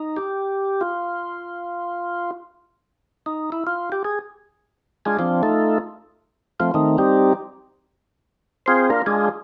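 A moderately reverberant studio sound frames this brief, greasy, swinging jazz cut, in which an up-front, full-bodied tonewheel organ with second-harmonic percussion, key click and a slow rotary speaker plays alone throughout, moving into a solo at 2.5 s over chords that pass through F7#9, F9, Cm and Bb9.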